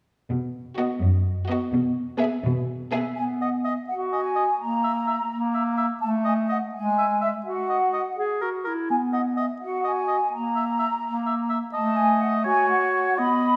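A playful, whimsical cinematic film cue in B major, this cut from a longer piece moves at 84 BPM in a lilting 6/8. It opens with a bowed string section: the cello section enters first at 0.3 s with a focused, up-front bass line, joined at 0.8 s by a lush violin melody, a second violin line and a close viola section accompaniment with portamento, all played with expressive vibrato. At 3.2 s the strings give way to woodwinds, as an airy, hollow flute section and a smooth-topped solo clarinet take up second lines, with a solo oboe in a light-vibrato, classical style joining shortly after. The woodwind passage wanders through quirky harmony, including chordless stretches and rootless chords, before settling on an open F#5 near its close. A generous scoring stage reverb gives the whole a spacious, cinematic sheen.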